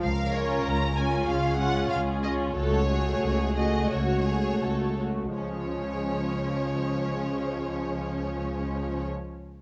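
Graceful and spirited, this quick classical-period movement for symphony orchestra moves at 80 to 95 BPM in a straight 4/4, set in Db major with tuning at A4 = 438 Hz, and is cut from a longer piece. The first violins carry the melody high in their range with a rich, expressive, vibrato-laden tone and a soft attack, while the second violins play a second line an octave lower, smooth, lush and even. The violas enter at 0.3 s with warm, up-front accompaniment, and the cellos sit in the background, smooth-topped and steady beneath them. A dark, woody double bass section holds a low Db throughout, giving the texture a deep foundation. The harmony moves from Db to Gbm over a Db bass and returns to Db at 5.4 s, the opening stretch slowing as it goes, all carried by a moderate recital hall reverb.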